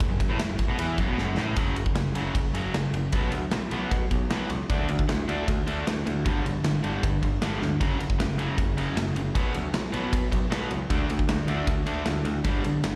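Hard rock at 154 BPM in a straight 4/4, this driving, menacing passage sits in F# phrygian and is cut from a longer piece, captured as a live club gig heard through the venue's PA with light, small-room reverb. Two overdriven guitars play riffs in the background, one an electric with a warm tone and the other a bright semi-hollow body, both picked and touched with slapback echo. A modern picked electric bass, direct, growly and punchy, anchors the low end. Up front, a big acoustic rock kit drives everything with a punchy kick, medium-tuned snare and bright ride cymbal, with drum fills at 1.2 and 7.6 seconds. After a brief F#m opening, the riffs move through power chords on F#5, B5, D5 and G5, landing on G at 12.5 seconds, shortly before the drums stop at 12.9 seconds.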